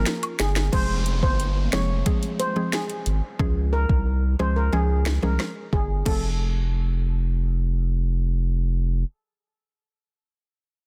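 A sultry, bouncy dancehall piece at 90 BPM opens on a drum fill from the electronic afro-pop kit, with its deep kick, sharp, softly clipped snare and metallic hats, while a brief touch of close, dry woodblock and cabasa and a very quiet, breathy pad sound only in the first moments. A thick, saturated sub bass sits up front with a fast attack and sustained tone, joined by a woody, round mallet-like synth pluck whose chorused, decaying notes pump against the beat. Over this, a mellow steel pan carries the melody with a shimmering, metallic tone softened by rubber sticks and trailed by tape echo. An electronic downlifter hovers in the background as the chords move from Bb minor through F minor and Db. The drums drop out at 6.2 seconds, leaving bass, pluck and pan to close this dense, heavily limited, dry-sounding excerpt on an F chord.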